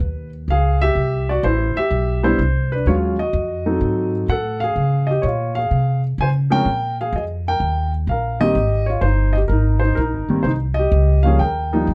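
Close, detailed microphones and light reverb give this short jazz excerpt an intimate, up-front sound. At a swinging 126 BPM in Ab major, a grand piano with audible action noise carries the melody from 0.0 to 11.9 seconds, while a woody, thumpy pizzicato upright bass plays beneath it throughout. The mood is sophisticated and playful, with rich harmony moving through chords such as Db9, Ebm11, Ab7b9 and Abmaj9 before arriving on Eb.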